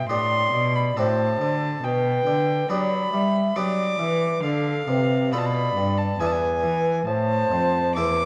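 From the first moment, a violin, a baroque flute, a harpsichord and a cello play together in this solemn, introspective excerpt from a baroque-style sonata movement with continuo, moving at an unhurried 69 BPM in 3/4 with a straight feel. The violin carries the melody up front with a gut-string, period tone, light vibrato and an airy bow, while the hollow wooden flute sings a pure, mellow second line from further back, with crisp attacks and vibrato. Beneath them, a reedy solo cello holds the bass close and present, and a bright, plucked Italian-style harpsichord fills in the accompaniment a little lower in the mix. The harmony drifts from G through D7/A and G/B before settling into A minor from 4.4 s, passing through Bm7b5 and E7 to land on Am at 7.1 s. A moderate scoring-stage reverb gives the ensemble a sense of space, and a worn, warbling cassette-tape character adds a warbly pitch drift across the whole recording.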